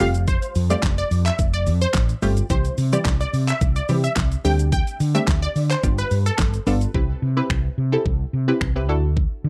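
A woody, round fretless electric bass sits up front and carries this bittersweet, energetic dance-pop excerpt at 108 BPM, pumping against the beat alongside a punchy, warbling chord stab treated with chorus and phaser. A bright, detuned unison pluck with a phaser carries the melody until 6.4 seconds, while an overdriven pop drum kit of knocking kick, fat snare, hi-hat, handclaps, finger snaps and shaker drives the drop, which gives way at 6.9 seconds. The dry, close sound recalls a 1970s studio, with chords moving from Fadd9 through C, D7sus4 and G7 to Cmaj7 and Dadd9.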